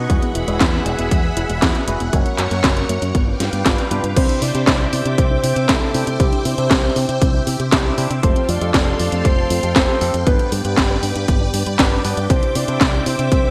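Bright, 1980s-style digital production sits in a lush hall reverb with a digital ambience, giving this sunny, danceable italo disco excerpt a glossy sheen at 118 BPM in a straight 4/4. A punchy, overdriven electronic kick and an up-front, overdriven house kit with a cracking snare, handclaps, hi-hat and crash cymbal drive the groove, the kit drenched in gated reverb and both sounding re-recorded in a large room. Underneath, a fingered electric bass with an envelope filter sounds direct and bright, while a vintage string machine holds mellow, full-bodied sustained chords with ensemble chorus. Tucked into the background, a soft, warbling pluck traces arpeggios through chorus and digital delay, and a barky tine electric piano adds lightly overdriven stabs with 12-bit sampler grit. The opening moves through Eadd9, F# and G7 before settling into C major at 4.2 seconds, where a round, octave-layered synth lead enters with the melody, its vibrato and delay floating over a Cadd9, Fadd9 and G progression.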